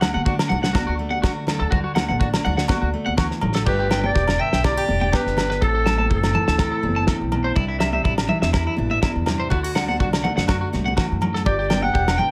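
A lightly swung 4/4 groove at 123 BPM in G major drives this sunny, carefree highlife guitar band excerpt, with a cloth-damped, thuddy drum kit up front and a fill at 3.4 seconds, ringing agogo bells, high-tuned congas in the background, and a woody, growly pizzicato upright bass underneath. A jumbo fingerpicked steel-string acoustic guitar with audible finger squeak accompanies, while a twangy electric guitar at the edge of break-up spins arpeggios through lush chorus and tape echo. A punchy, vibrato-rich clarinet takes a forceful jazz-style solo from 3.7 to 7.3 seconds and returns at 11.5 seconds over chords moving from D through G, Am and Cadd9, all in light reverb.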